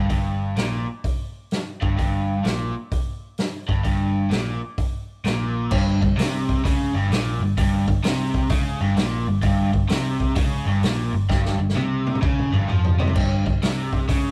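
A rough rehearsal-room recording with a damp booth ambience carries this gritty, brooding blues rock power trio cut in G minor at 129 BPM with a swung 4/4 feel, where a bright, scooped, double-tracked overdriven electric guitar riff with spring reverb sits up front over a dark, round, foam-muted electric bass and a punchy vintage drum kit with a rolled-off top, whose fill from 11.3 to 13.2 seconds leads into a brief, chordless closing section in this excerpt from a longer piece.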